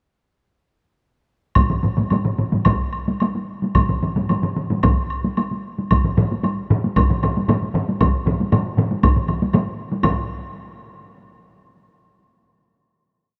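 A straight 4/4 pulse drives this short, complete taiko drum piece in the Japanese traditional style, beginning at 1.6 seconds and speeding up toward a final hit at 10.0 seconds, powerful and driving in mood. Three taiko ensembles carry it: one compressed and saturated, struck with heavy sticks on a repeating pattern; another set back in a live room, playing taiko phrases; and a close, up-front group with hard sticks on its own repeating pattern. Solo taiko drums add vintage, band-limited phrases, a woody woodblock keeps a repeating pattern in the room, and light reverb surrounds the ensemble.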